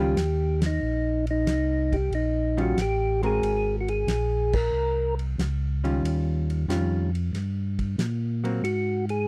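A dry, close 1970s-style studio sound frames this short, soulful soul jazz organ trio cut from a longer piece, swinging in 4/4 over bluesy dominant chords. A clean, percussive tonewheel organ carries the melody through a slow rotary speaker, while a second, lightly overdriven organ with chorus vibrato plays the round, dark bass line, and a hollow-body electric guitar adds clean, picked accompaniment up front until 8.6 s. A soul drum kit with a fat snare, tight kick and dark cymbals sits lower in the mix, and the whole band hits accents at 0.5 and 4.4 seconds.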